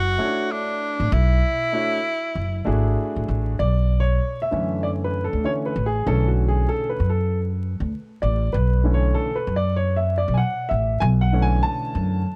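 Smoky and nocturnal, this jazz-hop excerpt at 97 BPM in B dorian swings over a Bm11 chord, with a warm, punchy, vibrato-laden tenor saxophone scooping into its notes for the first 3.0 seconds, a growly, woody pizzicato upright bass up front, and an intimate upright piano with audible action noise and a vintage feel that takes a solo from 3.6 seconds, all under a bed of vinyl crackle.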